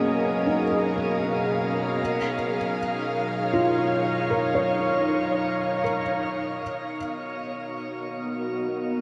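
In free time and tuned to A4 = 438 Hz, this short fragment of a longer ambient piece settles into a warm, peaceful calm built on a single C#13 chord. An ethereal, airy synth pad sits up front, holding sustained chords with a slow attack, long release, detuned sawtooth and triangle layers, a sub octave, ensemble chorus and its own reverb. Beneath it, an analog drone hums in the low register, evolving through pulse-width and ring modulation with a resonant, mellow tone and a touch of chorus. A felt-muted upright piano plays soft, intimate arpeggios, its boxy, thick-felt sound carrying audible action noise and a diffuse ambient delay until it drops out at 7.0 seconds. From 6.6 seconds a filter sweep moves across the pad while the drone continues underneath, and a long 7.8-second shimmer reverb bathes the dark production.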